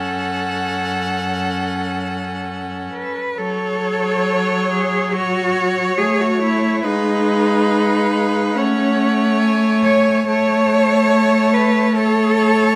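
A string quartet opens together in this yearning, elegiac excerpt of a slow romantic classical movement, the first violin singing a rich, smooth melody above a distant second violin line, while an intense, up-front viola accompaniment and a focused, up-front cello bass carry the harmony, all four bowed with vibrato and played with rubato in a recital hall's moderate reverb.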